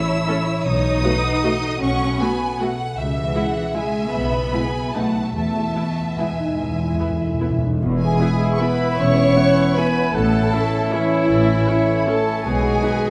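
Classical orchestral ballroom waltz excerpt in E major, elegant and sweeping, moving in a rubato 3/4 between 138 and 168 BPM as lush bowed violins carry a vibrato melody over a second violin line, a very quiet viola accompaniment, and cello and double bass sections on the bass. Mellow French horns hold sustained chords while a ringing, fingerpicked concert harp plays arpeggios in the background, and round, soft-mallet timpani enter at 4.1 s with a fill from 5.4 s. At 7.8 s the second section brings clear trombone chords and bright, tight trumpet stabs, soon joined by a hollow flute section and a present solo clarinet on second lines, all set in a wet scoring-stage reverb.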